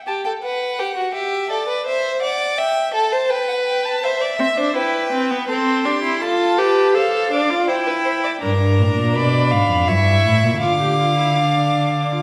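In a straight three-beat metre at 82 BPM, this lively, joyful baroque-style fugue for string quartet unfolds as a short passage cut from a longer piece. Two bowed violins open together at 0.1 seconds: the upper one carries the melody with a rich, smooth vibrato that sounds slightly distant, while the second traces its own line closer and more up front. A clear, focused viola joins at 4.4 seconds with accompaniment, bowed with vibrato and sitting up front. At 8.4 seconds the music turns from major toward D minor, and the warm cello enters on the bass, played sul tasto with an airy bow, soft attack and light vibrato for an intimate, close sound. Harmonies move through inverted chords to a diminished seventh and a dominant seventh before settling on D minor. The whole ensemble sits in a wet recital hall reverb that lends the lines a gentle bloom.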